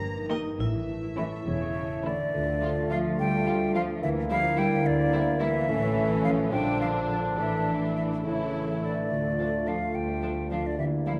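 A playful, whimsical cinematic film cue in 6/8 with a magical, quirky air, cut from a longer piece. Bright vibraphone struck with hard mallets carries the melody alongside a very quiet, distant con sordino chamber violin section, over ringing harp arpeggios and veiled cello and double bass sections. Dark studio violins and soft-attack violas join, an airy, up-front silver flute adds a second line from 1.2 seconds, and the vibraphone falls away at 2.0 seconds. From 2.3 seconds a vintage-toned clarinet, mellow bassoon and a tight French horn section holding sustained chords settle in the background, the whole ensemble set in wet scoring-stage reverb.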